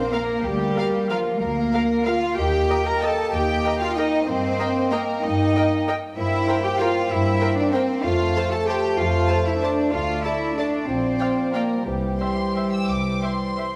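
The cello section stands out with a rich, floating bass line beneath high violins carrying a sul tasto melody in this sweeping, elegant classical excerpt in 3/4 at 168-208 BPM with rubato, where a second violin line, a dark viola section, a distant double bass section, a mellow clarinet, an airy flute group, a bassoon and a French horn section sustaining chords all fill out the scoring stage reverb over a progression from Bb/D to C, with soft-mallet timpani barely audible at 11.9 seconds.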